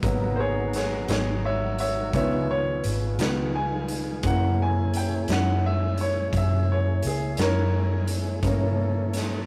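A bright, woody upright piano takes the lead throughout this rollicking, swaggering slow blues excerpt at 57 BPM in 12/8, its brilliant, intimate tone carrying audible action noise and long sustain over chords moving from Abm7 through Db7 and Gb7 to Gdim7. A round, foam-muted electric bass sits up front, while a gritty garage drum kit with a punchy kick and a pumping stone-room sound drives hi-hat, kick and snare. A clean tonewheel organ holds sustained chords through a slow rotary speaker, and a mellow, dark electric guitar with harmonic tremolo stays in the background, all captured in a rough rehearsal-room recording with saturation and moderate reverb.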